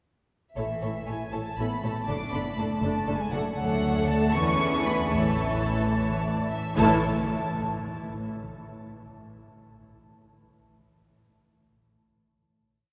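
At 0.6 s the strings of a classical-period symphony orchestra begin together in a quick, spirited and graceful movement in a straight 6/8. The violins carry the melody with light vibrato, soft attack and an intimate sul tasto tone, while a lush second violin line adds repeated notes, chords in the rhythm of the tune and answers at phrase ends. Smooth violas fill in from a distance with sustained chords, the cellos sit in the background doubling the tune at the octave, and a dark, up-front double bass section shapes repeated and sustained bass notes with expressive portamento, all heard from further back in a cathedral's long, wet reverb before the short piece settles on a final chord at 6.8 s.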